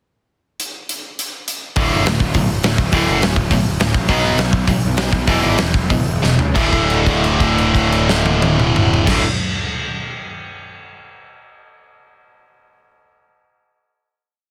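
A fast, straight punk rock groove in 4/4 at 176-207 BPM opens with the big rock drum kit alone at 0.6 seconds, its fat snare with soft clipping and punchy kick sitting up front in a big room, before two bright electric guitars, one biting and overdriven, the other tight and distorted, kick in at 1.8 seconds with palm-muted quarter-note riffs in D major. A round, fuzz-laden electric bass drives eighth notes underneath, and the rowdy, upbeat piece slows from 4.1 seconds into a drum fill and a final held D5 chord from 6.6 seconds, all under light reverb and a dense, heavily limited modern master.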